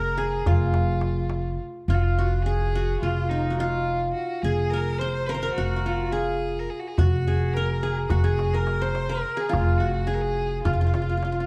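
Longing and melancholic, this cut from a longer Turkish makam ensemble piece moves in 9/8 at 212 BPM counted in eighths, in F makam kurdi, with a dark production and light reverb. A bright-edged qanun, played with fingerpicks on its triple strings, carries the melody up front, while a woody pizzicato upright bass on steel strings, also up front, holds down the bass. A clear, bowed violin with vibrato and a smooth top traces a quieter second line. In the background, a deep clay-shell darbuka with natural skin sounds close and dry under hard hands, playing from 0.2 to 1.7 seconds and returning at 7.0 seconds.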